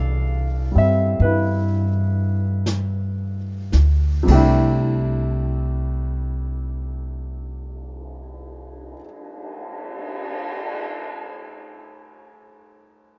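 A jazz ballad fragment with a tender, late-night mood, cut from a longer piece and moving at an unhurried, swung pace that slows through its opening 4.3 seconds. A baby grand piano carries the accompaniment from start to finish, its tone natural and up front with short sustain, opening on a C6 harmony. An upright bass, played pizzicato on gut strings, underpins it with a woody, dark, thumpy sound, also close in the mix, until it stops at 8.9 seconds. A jazz brush drum kit enters at 1.2 seconds and sits further back, with brushed snare, hi-hat, a boomy kick, a medium-tuned snare, crash cymbal and a cymbal swell. Small room reverb and a rough home-demo mix with rolled-off highs give the recording an intimate, unpolished feel.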